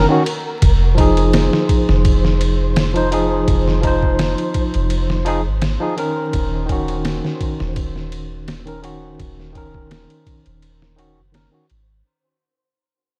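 A barky, bright tine electric piano played through a combo amp carries this dark, melancholic trip hop excerpt, its chords shimmering with harmonic tremolo and tape echo as they move from Ebm7 to Fm7 and back. A deep, round 808-style bass with a touch of tube saturation sits up front beside a compressed, pitched-down sampler kit of thumpy kick, medium-tuned snare and ride, played with a light swing. A flickering, granular texture hovers in the background, and the whole dry, gritty recording, dusted with vinyl crackle, fades out from 0.6 seconds to its close at 12.0.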